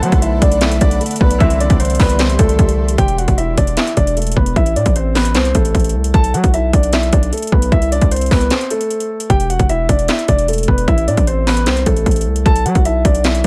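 A half-time trap beat at 152 BPM in E minor drives this brooding, hard-hitting hip hop piece, with an overdriven drum kit of hard-clipped kick, sharp snare, metallic hats and handclaps up front beside a heavy, saturated 808-style bass, while a dark, mellow baby grand piano carries the melody through a low-pass filter and digital delay, a fingerpicked Celtic harp rings in the background until 4.4 seconds, an ethereal, detuned pad with chorus and reverb holds chords only through the opening 3.0 seconds, and a brief break arrives at 8.5 seconds over a cycling Bm7, Cadd9, Em7 and Am progression.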